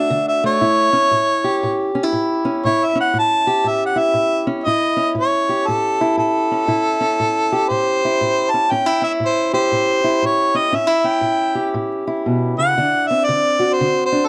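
A swung 4/4 groove at 118 BPM drives this soulful, rollicking acoustic country blues in A mixolydian, cut from a longer piece and moving from D to A7 and on to D7 at 12.8 seconds. Up front, a jazz-style harmonica with light vibrato, scooped notes and a smooth top carries the melody and takes a solo through the first 4.7 seconds, over a boxy, fingerpicked parlour steel-string guitar with fresh strings and a warm body. The close, dry 1970s-style sound has light reverb, a small-room ambience and a touch of vinyl crackle.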